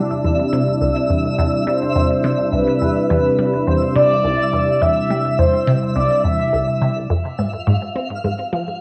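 Ambient, sequencer-driven space music at 105 BPM in a straight 4/4, hypnotic and mysterious, cut from a longer piece and captured on cassette at home with a wet studio reverb, opening on C before shifting to F minor at 7.1 seconds. A juicy, squelchy resonant blip pluck drives a riff under a sweeping, evolving pad of sustained chords, both up front, while a twinkling granular texture sparkles high above with octave-up shimmer. A round, horn-like synth lead with vibrato and lush chorus carries the melody from 1.7 to 6.8 seconds, and a very quiet, metallic vibraphone with medium mallets rings out arpeggios in a boxy small room near the end.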